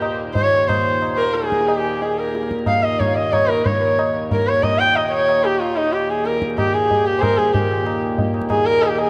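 A dark, bowed sarangi opens the recording at once, singing the melody up front over a reedy harmonium drone and high-tuned tabla. This radiant, serene Hindustani performance of raga khamaj in Eb moves in 3/4 at about 184 BPM with a straight feel, gathering speed as it goes. The sarangi sounds intimate and close, with a soft attack, light vibrato, gliding portamento and a smooth top. Its sympathetic strings ring beneath the line, and a diffuse ambient delay trails after it. The hand-pumped harmonium holds a low, nasal, breathing drone, while the acoustic tabla rings out near the listener. A lush hall reverb soaks the whole dreamy mix, and at 7.5 seconds the music turns to a new section before this fragment of a longer piece ends at 9.1 seconds.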